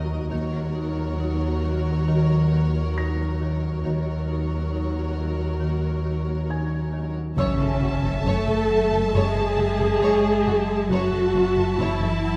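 Eerie and mysterious, this cinematic cue moves at a slow 68 BPM in 4/4 with a straight feel, cut from a longer piece. From the opening, a marimba with medium hard mallets carries a mid-forward riff over a dark, rumbling drone, while a bowed cello section adds rich, lush weight in the background, joined at 0.3 s by a bowed double bass section beneath a Gb/Eb harmony. A warm viola section sings an expressive accompaniment with vibrato and portamento, joined by a warm violin section on a smooth, even second line and a soft felt-muted upright piano sounding high in the background. At 7.4 s the music settles into F# minor on an F#m7 chord, an electronic impact lands in the background, and a bright, focused violin section enters holding an A5 melody. The whole ensemble sits in a wet scoring-stage reverb that lends the strings a spacious, haunted sheen.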